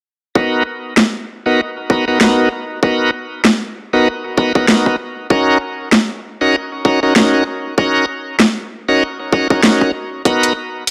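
Swaggering and funky, this glitch hop excerpt at 97 BPM swings its sixteenths as a bright, shouting tonewheel organ fires lightly overdriven stabs through a slow rotary speaker, sidechain pumping and analog delay over Bmaj7 and F#6/C#, while a tight, overdriven electronic kick and a drum kit of cracking snare and bright hats, entering at 1.0 seconds, sit up front in a dry, gritty cassette-tape sound.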